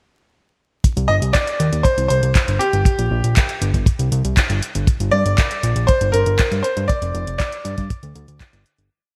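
Bright 1980s-style digital production with vinyl crackle and a light small-room reverb frames this short, nostalgic and bittersweet italo disco piece, where a dry, tight four-on-the-floor kick and a tape-toned disco machine beat of closed hi-hat and handclaps under gated reverb drive a fat, saturated, detuned sawtooth bass galloping in sixteenth notes, while a brilliant grand piano with delay sings motif-based song phrases up front before the piece fades out from 6.2 seconds.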